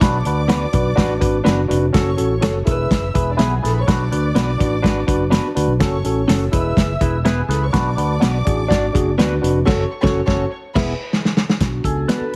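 Passionate and driving, this uptempo 1960s-style soul excerpt runs at 124 BPM in a straight 4/4, cycling through Bm, F#m and E over a tight, mid-forward drum kit with dark cymbals and a fingered electric bass that is punchy and direct-amped. A barky tine electric piano with phaser sits up front, a bright, compressed clean guitar adds picked stabs in the background from 0.5 s, and a dark, woody string section with vibrato and tape echo carries a lush second line. The band hits an accent from 9.7 s, with a drum fill at 10.6 s, all framed in light reverb and a heavily compressed, radio-like sound.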